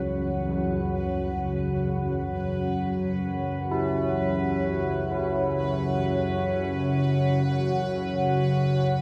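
Vast and ominous, this free-time dark ambient drone excerpt of about 9 seconds sets a deep, warbling, up-front pad of sustained chords and a mellow, organ-like drone beside soft bronze carillon bell arpeggios touched by tape echo, while a faint, bright, bubbling stepped-filter texture fades in throughout, all in a dreamy mix soaked in lush hall reverb.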